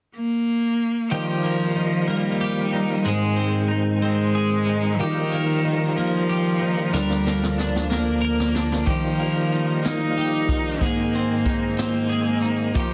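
A tender, heartfelt pop ballad in a straight six-eight, this excerpt opens with a clear, focused bowed cello carrying the melody with vibrato, entering alone at 0.2 seconds. At 1.1 seconds a bright, twangy twelve-string electric guitar joins with clean picked, double-tracked accompaniment, while a tonewheel organ lays down sustained chords, lightly overdriven with chorus vibrato, key click and a fast rotary speaker. The harmony moves gently through Ebadd9, Ab and Bb/D chords, giving the progression a heartfelt glow. Brushed jazz drums arrive at 6.9 seconds with a fill, their high-tuned snare and boomy kick sitting up front in a natural studio room. Light reverb surrounds the parts, and the whole mix has a heavily compressed, radio-ready sound.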